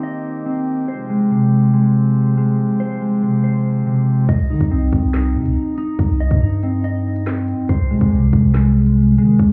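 A half-time drill beat at 141 BPM in 4/4 drops in at 4.3 seconds: a hard-clipped kick, a woody snare, handclaps, crisp hi-hats and a crash cymbal give the electronic kit its produced edge. This cold, dark hip hop excerpt in C minor opens with a pipe organ on a nasal cornet solo stop, holding sustained chords in a romantic voicing that moves from Cm7 to Fmadd9/C before dropping out as the drums arrive. A clean, fingered electric guitar plays dark, compressed arpeggios up front from the start, touched with subtle chorus and delay, and carries on through the whole passage. Once the beat lands, a deep, sine-like 808-style bass with a fast attack sits up front, its long mellow notes decaying under the shift from Cm to Ab/C. The whole mix sounds muffled, as if heard through a wall, with a club reverb hanging around it, and it cuts off at 9.5 seconds as part of a longer piece.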